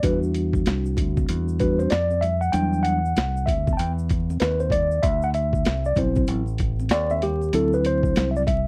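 Mellow and cool, this jazz-hop clip from a longer hip hop piece moves at 96 BPM in E minor with a loose 16th-note swing, featuring a clean tine electric piano that plays a solo through its built-in speakers over Em7, shifting to D9 at 5.0 seconds. Beneath it, a deep, round fingered electric bass punches up front, while a gritty, pitched-down boom bap sampler kit, tape-warm and re-recorded in a large room, pairs a thumpy kick with a high-tuned snare and hi-hat. Bright, saturated egg shaker and congas sit in the background, and the dry, close 1970s-style studio sound carries a layer of vinyl crackle.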